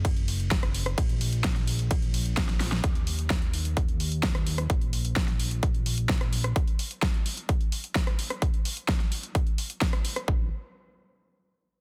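Anthemic and euphoric, this festival progressive house excerpt drives at 129 BPM in a straight 4/4, opening on a drop that ends with a drum fill and a full-band accent at 2.7 seconds. A punchy, overdriven electronic kick sits up front alongside a layered big-room kit of hi-hat, ride, rim click and a huge snare, while a fat, detuned sawtooth bass with a filter pluck pumps from the sidechain until 6.5 seconds, returning only briefly near the close. The mix is dry, dense and heavily limited.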